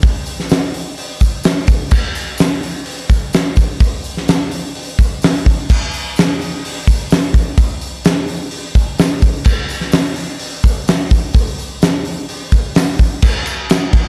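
A steady, straight 4/4 rock groove drives this short cut from a longer piece, carried by a big acoustic drum kit with a fat snare, punchy kick, hi-hat and crash cymbal, sitting up front with a dark, smooth, rolled-off top and the sense of a big room. A very quiet tambourine adds a jingly, bright shimmer, close and dry, across the full 14.0 seconds. The production is dark and warm with little reverb, lending the rhythm bed a dreamy, hazy mood.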